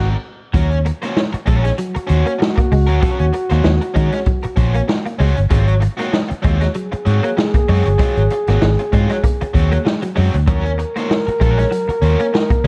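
Hypnotic, driving funk at 97 BPM in Eb dorian, swung on the sixteenths, opening on a band accent as a dark, round, foam-muted fingered bass sits up front from the start, with a punchy, swinging big-band kit carrying vintage 12-bit sampler grit joining at 0.5 s, while an overdriven guitar comps, a twangy, compressed clean guitar with ensemble chorus plays a riff, and a breathy, close-miked trombone with light vibrato carries a mellow second line over Ebm7 and Ab13 chords, all in a small room on cassette tape.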